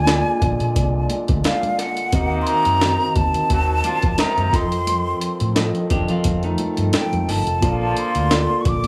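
A breathy, hollow concert flute carries the melody up front over a clean tine electric piano, distant French horn chords and a round, foam-muted electric bass in this warm, smooth, lush 1970s-style soul excerpt at 87 BPM in Bb major, while a gritty, pitched-up sampler-style drum kit with a thumpy kick and very quiet soft-handed congas set a light 16th-note swing; a vintage horn section with light vibrato adds octave-doubled stabs from 2.1 seconds, and a bright, twangy, slightly broken-up electric guitar riff sounds from 5.9 to 7.4 seconds as the chords move from Bb7 through Ebm6 and F7 to Bbmaj7.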